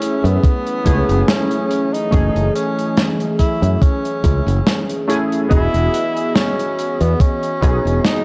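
A lightly swung 4/4 groove rests on a thumpy, sampler-style electronic kick placed up front, with hi-hat and a medium-tuned snare from an acoustic studio kit treated with gated reverb, and a growly, punchy fingered electric bass entering at 0.2 s. In this dreamy, nostalgic vaporwave excerpt, warbling lo-fi synth keys with detuned chorus, 12-bit sampler grit and tape echo sit over a very quiet, mellow tape-like pad holding sustained chords that move from F#m7 to Emaj7 at 5.5 s. A breathy tenor saxophone carries the melody in a jazz style, with vibrato, subtone and scooped notes trailed by tape echo, all set in light studio reverb with a cassette tape character.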